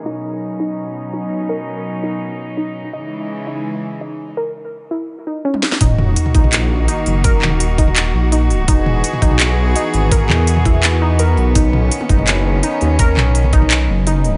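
A dark, detuned sawtooth bass rumbles up front once the drop lands at 5.8 s, anchoring a heavy, half-time drum and bass passage cut from a longer piece. From the start, a rich, floating cello ensemble holds soft-attack bowed chords that pump against the beat, while a warbling, lo-fi pluck arpeggiates through chorus and dub echo under a filter sweep, and both carry on through the drop. A drum fill at 5.5 s leads into the drop, where a knocking electronic kick, a layered kit with cracking snare, crisp hats, handclaps and toms, and a background sub drop fill out the digital ambience.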